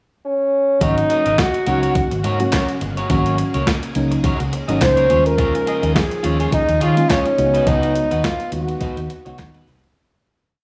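Early-eighties boogie funk with a late-night, danceable mood, swung lightly on the sixteenths over a short pickup bar. A clear, classical-style French horn carries the motif-based melody up front, its call phrases trailed by analog delay and entering at 0.3 seconds just ahead of the band. At 0.8 seconds the groove arrives: a crisp, sampler-style 8-bit drum machine, overdriven and thumpy, pounds a four-on-the-floor boogie beat with the snare layered with handclaps, while a dark, foam-muted fingered bass rolls out a fat syncopated line laced with chromatic approach notes. A mellow tine electric piano drops clean syncopated stabs in rootless voicings with grace notes, and a slightly broken-up electric guitar chops out picked sixteenth-note figures with a subtle chorus. Behind them a shimmering sawtooth string machine holds slow-attack violin chords through ensemble chorus as the harmony moves through suspended ninth chords, all within a light studio reverb, before the whole piece fades out from 7.7 seconds.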